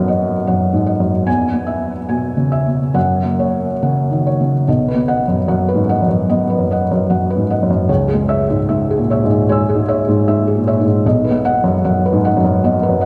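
A vast, echoing space surrounds this recording, with a long, wet cathedral reverb that lets every note linger well after it is struck. Within it sits a lone felt-muted upright piano, placed up front so its soft, intimate, mellow tone stays close to the ear even as the hall blooms around it, and a slapback echo trails its notes. This is peaceful, hopeful neoclassical minimalist piano in B major, moving at 75 BPM in 4/4 with a loose, rubato feel. The piano spans from B1 up to E6, and its thick felt gives the sound a warm, cushioned quality. The same musical idea is heard twice, with the second statement starting at 4.7 seconds, and the harmony settles back home on B at 11.0 seconds. Running just over 13 seconds, the passage is cut from a longer piece.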